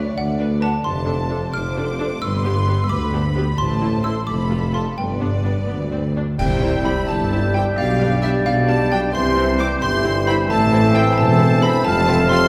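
A woody, dry xylophone and a lush, vibrato-rich violin section open this playful, whimsical film cue together, sharing the melody in 6/8 while a second violin line sits beneath them. Underneath, the cello and double bass sections join a soft-edged tuba on the bass line, and a very quiet, clear viola section slips in at 0.4 seconds with accompaniment. At 6.4 seconds the full band lands an accent, marked by dark clash cymbals and concert bass drum heard up close, as the cue moves into its second section. Here the woodwinds arrive with their own lines: an airy, distant flute up high, a roomy oboe, and a shadowy clarinet in the background, while a bassoon adds accompaniment and a mellow, vintage-toned French horn section holds very quiet sustained chords. The whole ensemble sits in a wet concert hall, heard from further back in the room, giving the quirky, storybook mood a spacious glow.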